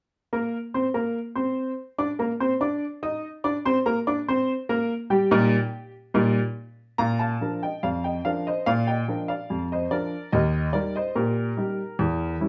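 A clear, woody upright piano, slightly detuned and worn, plays a lively, jaunty solo ragtime passage in Bb major at 72 BPM in a straight 2/4, sitting up front in a dark production with moderate studio reverb as its harmony moves between Bb and Eb before landing on an Edim7 at 12.0 seconds, shortly before this fragment of a longer piece ends.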